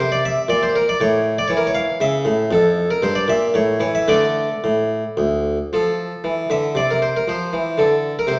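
A solo harpsichord in the Flemish style, plucked on a single set of strings, carries this brief cut from a longer baroque-style suite movement in D minor. Its tone is round and warm, sitting up front and spanning from a low D2 to F5. The mood is grave yet flowing, in 3/4 at roughly 107 to 123 BPM, played with a rubato feel that lets the pulse breathe. The harmony moves from Bbadd9 to A, pauses on an unharmonized moment at 2.5 seconds, then passes through Edim/G and A before settling on a bare D5. The opening phrase returns at 5.7 seconds on an F5 sonority, and the whole is bathed in the reverb of a stone room, heard from further back in the space.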